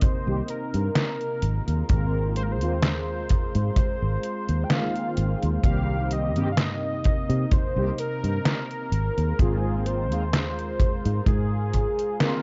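A velvety, detuned synth lead carries the melody with chorus, tape echo and vibrato over a lush, warbling unison pad and a mellow synth brass part, brassy and wave-folded, that enters at 0.3 s with phaser, ensemble chorus and tape echo, while a round, foam-muted fingered electric bass, a punchy acoustic kick drum and an overdriven, detuned 8-bit digital drum machine playing hi-hat and snare sit up front in this dreamy, woozy vaporwave excerpt at 64 BPM in Ab major, moving between Cm7 and Ab69 in a dry, dark production.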